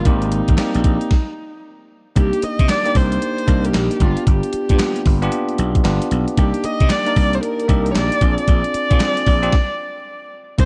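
A close, woody viola with vibrato carries the melody over bell-like tine electric piano chords and a growly, overdriven slap bass, joined almost at once by an up-front, gated 80s drum machine with a thumpy kick, gated-reverb snare, handclaps and hi-hat in an upbeat, flirty new jack swing groove with a swung feel, dry, dark production and stop-time breaks at 1.1 and 9.5 seconds.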